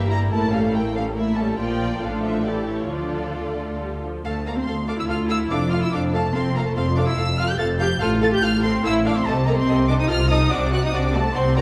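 Set in a brisk 3/4 at 143 BPM and shaped with rubato, this dramatic, restless movement for string orchestra in D minor carries the poise of the classical period and is cut from a longer piece. A lush violin section sings the melody high above the ensemble, reaching up to A6, while a second violin section traces a smooth inner line beneath it. The violas supply the accompaniment with a rich, even tone, and the cellos and double basses share the bass: the cellos dark and woody, the basses soft in attack and expressive, both set at a distance behind the closer violins. Every section plays with vibrato across the full 11.6 seconds, as the harmony opens on A7b9, passes through Bb and Dm, turns toward F after 4.3 s, then darkens with Adim/C before settling on D7/C. A recital-hall reverb with a 1.8-second decay wraps the ensemble in a wet, churchlike space.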